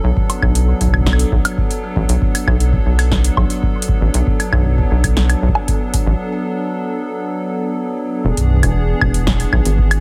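A rubbery, bouncy square bass sits up front with a resonant filter pluck, holding the low end under a hollow, flute-like pad of sustained chords that carries chorus and sidechain pumping in this intricate, cerebral IDM cut from a longer piece, set in B dorian at 117 BPM in straight 4/4. A deep, tape-warm electronic kick re-recorded in a large room is soon joined by an analog drum machine with a punchy snare, metallic hats and woodblock, treated with analog delay and heard in a small room, all inside an echo-heavy digital ambience. Harmony rests on Bm7 until a break from 6.2 to 8.2 seconds, after which a new section shifts to E7.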